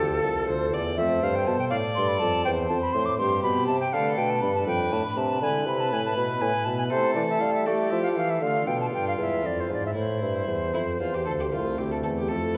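All four parts sound together from the opening instant of this grave, solemn baroque-style sonata movement in A minor, a short passage cut from a longer piece and moving at a rubato 80 BPM in 12/8. An airy concert flute carries the melody up front with vibrato and a crisp attack, singing between A4 and D6, while a single bowed violin with a dark, reedy gut-string tone traces a second line from a more distant place. Beneath them a pipe organ principal stop supplies smooth continuo accompaniment in baroque voicing, its pipes touched with a little chiff. A mellow, close-miked bassoon anchors the bass with light vibrato in classical style. The harmony travels from D minor through F, C over E, a half-diminished B chord and E7 before settling through D minor and E onto A minor at 10.0 seconds. The flute falls silent at 12.3 seconds as the others continue to 12.6, all wrapped in the wet bloom of a scoring-stage reverb.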